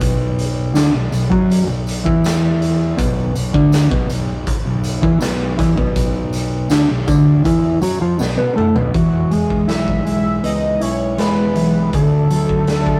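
Psychedelic rock excerpt with a kaleidoscopic, hazy mood, where a dark, clean electric guitar riff shimmering with harmonic tremolo sits up front over round, overdriven fuzz bass, a gritty, punchy garage drum kit pumping in a stone room, and a very quiet jingly tambourine that stops at 8.4 seconds, before a drum fill ushers in a fat, detuned analog synth lead with phaser and vibrato at 8.9 seconds as the chords move from B5 to E and D, all in a rough rehearsal-room sound.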